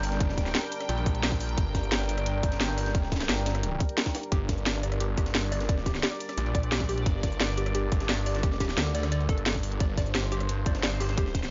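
A lightly reverberant mix with a dulled top end frames this dark, aggressive excerpt of technical drum and bass in G minor at 175 BPM. An up-front, snarling distorted saw bass growls beneath an overdriven electronic kick, a drum and bass kit with a cracking snare, bright hats, cabasa and rim click, and a very quiet, gritty, pitched-up breakbeat kit, while a sweeping resonant pad holds a single G minor chord with filter swells and sidechain pumping. At 4.3 s a warbly, dusty, lo-fi pluck enters in the background with mellow arpeggios and tape echo.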